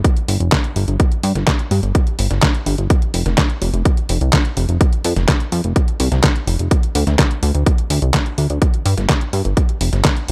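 The sound is dry and close, with very little reverb, and every part sits up front. This short fragment of an italo disco track in straight 4/4 has a bittersweet, nostalgic mood. A punchy, layered electronic kick drives it from the start, overdriven and carrying the air of a large room. A detuned 8-bit drum machine adds handclaps, hi-hat and a medium-tuned snare, gritty with overdrive and set in a smaller, tighter space. From 0.3 seconds a glossy, retro chorused synth bass blends pulse and sawtooth tones, with pulse-width modulation, a filter sweep, a fast attack and a saturated, mellow sustain, moving between F1 and G2. The whole passage stays in a single section until it breaks off at 10.3 seconds.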